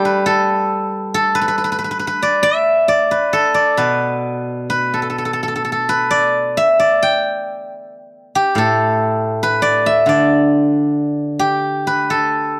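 A dry, close 1970s-style studio sound with light reverb frames this serene, elegant fragment of Chinese traditional solo plucked-string music, where a steel-string zither played with fingerpicks rings out silvery and up front across a span from A2 to G5, unfolding in a free rubato around 67 BPM in 2/4 in the D zhi mode for its full 12.6 seconds as part of a longer piece.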